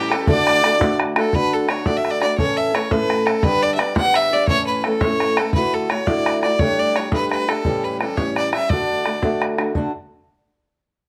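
A clear, earthy fiddle carries the melody up front with a smooth top and a touch of plate reverb, while a rich, faintly vibrato second fiddle sits very quietly beneath it for just the opening second. This is a lively, cheerful Celtic jig in 6/8 at 114 BPM in D major, cut from a longer piece, with a dark, woody, boxy fingerpicked ladder-braced acoustic guitar on old strings sitting up front in the mix and a damped, tight, vintage-sounding bodhran underneath. Close, detailed miking and light room reverb frame a progression that moves from D through A, G, A again, Dadd9, Gsus2 and A7 back to D by 8.7 seconds.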